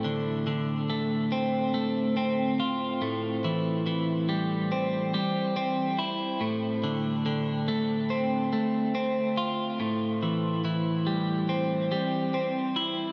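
Soaked in a huge ambient reverb, this dreamy rock fragment places a lone twelve-string electric guitar up front, its clean, picked tone bright and twangy with a compressed edge, further colored by spring reverb and a diffuse ambient delay. The melancholic, cathartic mood rests on a straight 4/4 movement between Dm7/A and Am7, with the guitar spanning A2 to F4. A new passage begins at 9.8 s on Am7 and carries through to the cut at 13.1 s.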